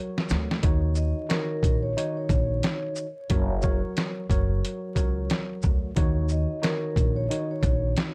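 Boom-bap hip hop with a gritty, moody cast, this short cut from a longer piece swings its sixteenths and opens on a drum fill in its first 0.6 seconds. The sampler-style kit sits up front, compressed and pitched down with vintage 12-bit grit, pairing a thumpy kick and a medium-tuned snare with hi-hat and shaker. Underneath, a pizzicato upright bass with steel strings gives a woody low end, while a worn, slightly out-of-tune tine electric piano comps through built-in speakers, lightly overdriven and filtered with a cassette-tape tint. At 1.0 seconds a soft-mallet vibraphone enters with a mellow, ringing melody, its slow motor vibrato trailed by tape echo. The harmony moves between Gb and Ebm7 in a dry room, with vinyl crackle laid over the whole track.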